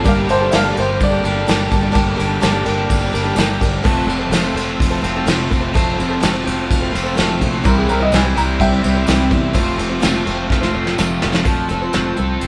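A straight, steady 4/4 pulse drives this open-road slice of folk rock and heartland rock. It is carried by a brushed drum kit sitting up front, with a punchy kick, medium-tuned snare and dark cymbals. A fingered electric bass, foam-muted and round, holds the low end, while a shimmering, octave-doubled twelve-string acoustic guitar picks out the accompaniment, and a bright, crunchy overdriven electric guitar, double-tracked and forward in the mix, plays the riff throughout. A clear, woody upright piano, worn and slightly detuned, adds a second line in two short spots, and a very quiet, jingly tambourine sits close and dry beneath the band. The group sounds as if it is playing together in one room with moderate studio reverb, and a drum fill at 10.5 seconds leads into a new section at 11.4 seconds before this cut from a longer piece ends at 12.5 seconds.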